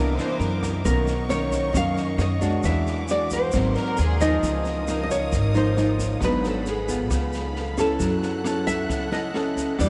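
A straight 4/4 bossa nova groove at 134 BPM sets a relaxed, breezy mood in this excerpt, carried by an open jazz drum kit in the background with a boomy kick, rim click and a high-tuned snare, plus a grainy, mellow tube shaker. Underneath, a woody, thumpy pizzicato upright bass and a deep, fingerpicked nylon-string guitar accompaniment hold the harmony, while a symphonic string section sustains lush, soft-attack chords with expressive vibrato. From 0.9 s a second fingerpicked nylon-string guitar takes the melody up front, touched with subtle chorus. A smooth, bowed violin section adds a brief second line through delay in the background, returning around 3.8 s. The whole mix is dreamy and soaked in a huge ambient reverb, with a dark, rounded top end.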